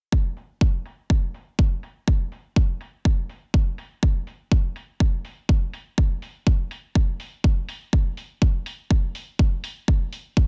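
A punchy electronic kick drum opens this piano house excerpt at 0.1 seconds, joined by an electronic hi-hat at 0.4 seconds. The pulse sits at a steady 123 BPM in straight 4/4, carrying a soulful, bittersweet mood across a single section. Both drum parts are layered, produced and tape-warm, placed up front after being re-recorded in a large room. A low-pass filter softens the hi-hat and its room sound, and a filter sweep runs across the drums for the whole passage. The overall sound is dry, with little reverb, under a dense, heavily limited modern master.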